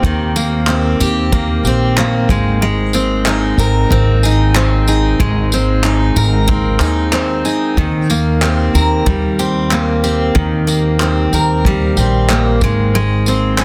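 Acoustic pop with a wistful, tender mood, this excerpt from a longer piece moves in a straight feel between Eb6 and Abadd9 chords. A bright, full-bodied picked dreadnought acoustic guitar and a woody pizzicato upright bass sit up front, while a clean, compressed, direct-recorded electric guitar plays arpeggios in the background. A dark, smooth brushed kit with a tight kick, handclaps and tambourine, its top rolled off, rounds out a small room with light reverb and a dense, heavily limited modern master.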